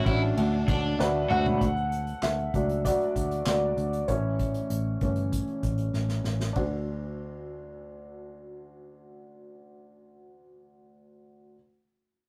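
A rough rehearsal-room recording with tube saturation and a short, wet booth ambience frames this hopeful piano-driven pop excerpt in D major at 97 BPM, where a lush bowed violin section and a bright, overdriven guitar riff sound only briefly at the opening before a woody, slightly detuned upright piano, up front with long sustain, takes a solo from 1.6 to 6.6 seconds over a round, foam-muted picked electric bass and an airy acoustic drum kit with punchy kick, dark cymbals and handclaps that plays fills and stops at 6.7 seconds.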